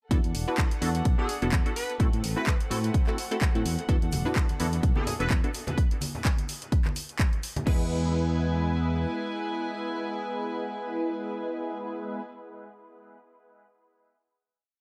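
A punchy, overdriven four-on-the-floor kick drives this sunny, feel-good filtered disco house piece at 127 BPM in E mixolydian, joined by a growly fingered electric bass playing a funky syncopated line, bright programmed hats with claps and crash, a detuned sawtooth polysynth comping dotted-rhythm chords through chorus, phaser and dub echo, a floating, distant string section holding soft bowed chords, a brilliant horn section adding short gritty background phrases from 1.2 s, and ringing shaker and congas entering at 3.9 s. Every part but the kick pumps in an echo-heavy mix before the drop gives way to a final E chord at 7.7 s.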